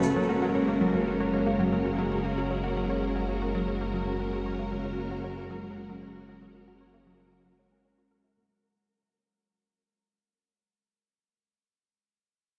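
A lush, full-bodied string machine sits up front, holding sustained chords on an F#add9 harmony with a vintage, sawtooth richness and a thick ensemble chorus. Underneath, a fat, detuned analog bass sustains a single low note, while a round, nasal analog pluck repeats a riff coloured by chorus, phaser and delay. A bubbling stepped-filter texture joins at 0.8 seconds, its resonant random filter steps drifting mellowly in the background with chorus and built-in reverb. A fingerpicked concert harp rings through delayed arpeggios at the back of the mix. The mood is expansive and hypnotic, bathed in a huge, wet reverb that makes this cut-down section feel like a big sound system playing in a bare room. Everything fades out from 0.2 seconds, the bass fading too, while a filter sweeps across the synth arpeggio sound, and after the other parts stop at 8.5 seconds the harp carries on alone until 11.5 seconds.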